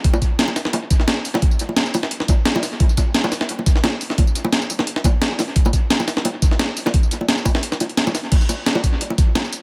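A drum and bass groove at 174 BPM in 4/4 drives this short cut from a longer piece, its sixteenths carrying a slight swing of 53%. An overdriven electronic kick sits up front, knocking and layered, with the character of a re-recording in a small room. Over it, a sampler-style breakbeat kit brings crash cymbal, hi-hat, tambourine and a high-tuned snare, pitched up, compressed and gritty with a tape-warm grain, and soaked in dub echo. Round, low-tuned acoustic bongos, played with hard hands and miked close, sit lower in the mix and carry their own dub echo. The mood is soulful and lush, with the drop running from the start until a brief break at 7.6 seconds before it returns at 8.3 seconds. Light reverb and digital ambience surround an echo-heavy mix.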